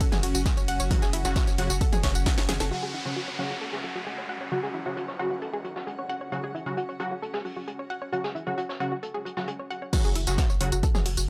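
Set in a light, digital-sounding reverb, this excerpt of driving, intense peak-time techno opens on a drop: a heavy, up-front electronic kick, a cracking techno kit with sidechain-pumped hats, cymbals, tambourine and toms, and a thick, tube-saturated sub bass, while a deep, moody ambient pad drones very quietly beneath. The kick drops out at 2.4 seconds, and after a drum fill the bass and techno kit fall away at 2.7 seconds. An up-front downlifter then sinks through the break while a distant, roomy brush kit with a high-tuned snare, a round, detuned analog pluck riff with chorus and delay, aggressive, warbling rave stabs, and a blurred, evolving granular cloud pad in the background carry the music. The kick, sub bass and techno kit slam back in at around 9.9 seconds for a second drop.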